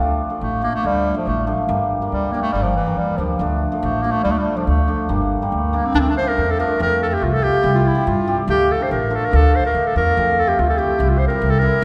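Soulful and bittersweet, this short klezmer passage moves at 142 BPM in a straight 2/4, set in D minor and cut from a longer piece. A warm clarinet carries the melody from 0.4 seconds, sounding present and up front in a classical style as it sings as the solo voice. Beneath it, a hammered dulcimer supplies shimmering, ringing accompaniment, while an upright bass plays pizzicato with a woody, growly tone from its steel strings. The harmony circles between D minor and G minor before turning toward F and C in the second half, which begins at 6.8 seconds. A lush concert hall reverb surrounds the trio, giving the recording the spacious resonance of a church or large hall.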